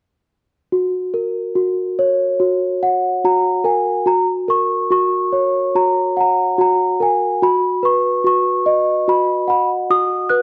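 Sleepy and tender, this short piece of children's music drifts along at a gentle 72 BPM in 4/4, with a rubato feel that lets the time breathe freely. A solo celesta carries the melody from 0.7 seconds, ranging from F#4 up to F#6 in F# major, its bell-like tone sounding sweet and delicate, as though struck by soft felt hammers. The instrument sits up front in a dark production with light reverb, giving the notes a mellow glow. After the opening phrase, a new passage begins at 4.1 seconds, and the harmony moves from F# to B at 7.4 seconds before this fragment of a longer piece ends.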